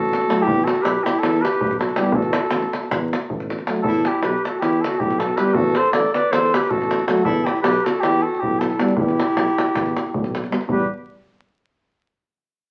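A vintage-toned flugelhorn with light vibrato carries the melody up front in this fiery, restless slice of Balkan brass band folk, cut from a longer piece. Set in E minor at 316 eighth-note beats per minute in 9/8 with a straight feel, the tune moves over a harmony that keeps returning to Em, passing through a rootless Gmaj7sus2/A and Am69. A warm clarinet plays the second line, while a mellow tuba with a soft attack and smooth top holds down the bass. A tight, band-limited davul sits prominently from 0.1 s, and from 0.3 s a dark French horn, set back in the mix, joins a euphonium in the accompaniment. The sound carries wet studio reverb and the crackle of a very old 78 rpm record, giving the whole performance an aged, period character.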